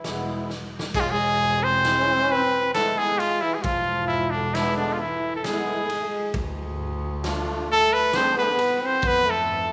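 This klezmer fragment in a straight three-time feel is festive yet bittersweet, cut from a longer piece. A bright, punchy cornet carries the jazz-style melody up front, forceful, with light vibrato, scooped notes and a slapback echo. Beneath it, a clear, present trombone plays a classically styled second line. A reedy musette accordion with shimmering wet tuning sits close and dry, while a single bowed double bass adds a rich, focused low end with its own vibrato. The acoustic drum kit, gritty and saturated with a boomy kick and a rolled-off top, plays a short fill at 0.5 s, and the harmony moves from E to Dm at 6.3 s and F at 9.0 s. A lush hall reverb surrounds the rough home-demo mix.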